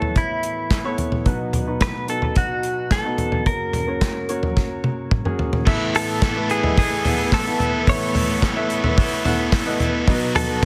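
A dense, heavily limited modern mix with light small-room reverb frames this uplifting, hopeful stretch of piano-driven pop, cut from a longer piece, where a clear, open baby grand with long sustain carries the accompaniment. A twangy, scooped clean electric guitar, recorded direct and touched with digital delay, picks out the melody up front over a punchy, natural country drum kit with dark cymbals, handclaps and toms, whose fill from 4.6 to 5.7 seconds leads into the second section. At 5.7 seconds a cranked, overdriven stack guitar joins with a bright picked riff, while a lush, very quiet string section adds sustained bowed chords with vibrato beneath it.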